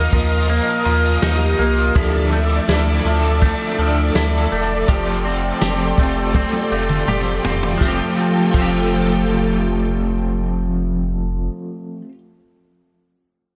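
A bright, double-tracked overdriven semi-hollow guitar with tremolo and lush chorus opens this dreamy, floating dream pop excerpt in F major at 82 BPM, alongside a clean, picked semi-hollow guitar playing arpeggios through subtle chorus and digital delay, up-front sawtooth string-machine violas holding sustained chords (Ebsus2, Dmadd9, then Fadd9) through phaser and ensemble chorus, and a round sine sub bass, while a punchy acoustic vintage drum kit with crash, ride, snare, tambourine and toms rolls through a fill before stopping at 8.7 seconds, and a very quiet, ringing vibraphone with slow motor vibrato drifts in at 1.4 seconds, all set in light reverb and small room ambience.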